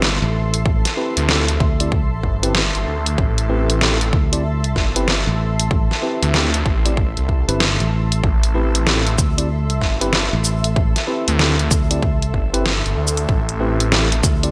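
Swung sixteenths at 95 BPM drive this swaggering, funky glitch hop cut in A minor, where a punchy electronic kick joins at 0.7 s beneath a dubstep kit of hi-hat, shaker and deep gated-reverb snare. A thick, swirling phased saw bass sits alongside a growly, bright fingered electric bass, and tine electric piano stabs carry gritty 12-bit sampler crunch, sidechain pumping and delay. A cloudy, evolving granular pad shimmers high above in lush chorus, all resting on an Am7 with a glossy 1980s-style digital sheen.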